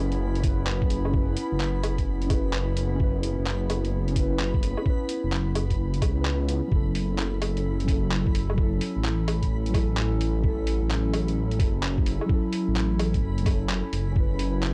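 A menacing, detuned saw bass sits up front with tube saturation and sidechain pumping, anchoring this ghostly, melancholic future garage excerpt, which drifts between C#m7/F# and F#m7 on a swung groove. Muted, felt-like synth keys with chorus and tape echo and a warbling, nostalgic tape-like pad breathe under the pumping, while a reversed, granular texture hovers bright and dreamy in the background. A muffled, pitched-down sampler kit of handclaps, hi-hat and woodblock joins at 0.1 seconds with a thumpy electronic kick from 0.4 seconds, all captured with a dry, gritty cassette character.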